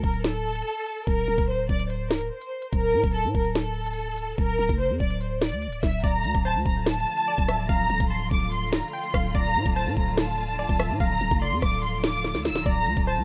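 Menacing and cold, this half-time drill excerpt sets a lush, bowed violin section with vibrato and portamento over a growling 808-style bass and a crisp, knocking drum kit with sharp snare, then at 6.0 seconds brings in a glassy wavetable pluck treated with chorus, digital delay and plate reverb alongside smooth sustained strings, before a drum fill at 12.2 seconds in a rough home-demo mix.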